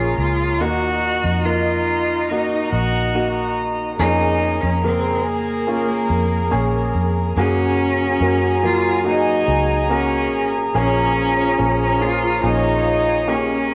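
A bright, biting, intense bowed cello with vibrato carries the longing melody of this emotional, slow pop ballad in Bb minor at 71 BPM, over a polished baby grand piano with short sustain, a floating sul tasto string section, and a round, foam-muted electric bass, while a dark, roomy French horn section enters at 7.4 seconds with a second line, all set in spring reverb with the soft haze of a home cassette recording.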